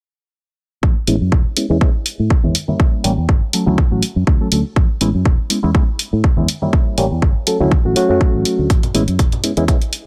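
A dry, close-sounding slice of sunny, feel-good filtered disco house, swung in 4/4 with a filter sweep running throughout. A punchy, tape-tinged electronic kick and a layered electronic hi-hat drive the groove alongside very quiet, saturated tambourine and congas, while a round, foam-muted fingered electric bass pumps under sidechain compression. Up front, a reedy, lightly overdriven electric piano with phaser and pumping cycles through Amaj9, a rootless A7b9 and Dmaj7.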